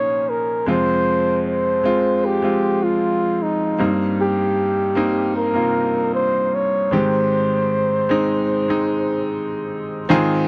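In a straight 4/4 pulse at 76 BPM, this short pop excerpt unfolds with a longing, melancholic air, moving through Bbm7, Fm, Cm7/G and Abmaj7. A breathy flugelhorn carries the melody up front with a mellow, whispered, intimate tone and vibrato, stopping at 9.3 seconds, while a brilliant grand piano accompanies with a polished, present, long-sustaining sound until 10.5 seconds. The sound is dry and close, like a 1970s studio recording with little reverb.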